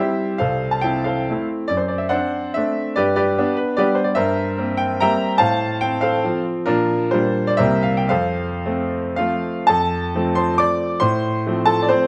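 A bright, up-front grand piano with a brilliant, vintage tone and long sustain plays alone in this graceful, rustic romantic classical dance in 3/4, moving with rubato between 106 and 158 BPM and settling into F major from 4.2 s, its dotted rhythms ringing in a moderate recital-hall reverb through close, detailed microphones, in a passage cut from a longer piece.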